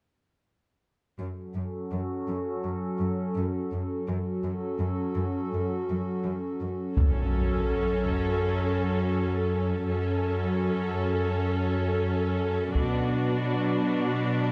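A steady, straight 4/4 pulse underpins this brooding, relentless hybrid orchestral and electronic film cue, cut from a longer piece. A smooth, vibrato-rich chamber cello section enters at 1.2 seconds, and from 1.4 seconds a hollow, flute-like pad with chorus and a low-pass filter holds sustained chords above it while a filter sweep unfolds. At 7.0 seconds the build-up begins as an intense symphonic viola section joins, heavy-stick taiko drums strike in a live room, and an electronic impact lands. The dark production carries light reverb, with the chords moving from F#m to Bm near the close.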